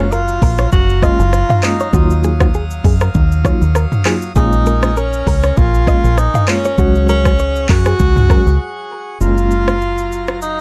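Afrobeats with a romantic, breezy mood, cut from a longer piece, where a breathy, mellow tenor saxophone sings a jazz-style melody with vibrato and scooped notes over a worn, slightly out-of-tune tine electric piano with fast tremolo and plate reverb, majestic full pipe organ chords held quietly beneath, a bright, compressed clean guitar riff with subtle chorus and digital delay that stops at 8.4 seconds, a round, foam-muted dub bass and a deep house drum kit of deep kick, smooth hats, handclaps, rim click, shaker and toms up front, all in a dark, dry production with a short break at 8.6 seconds.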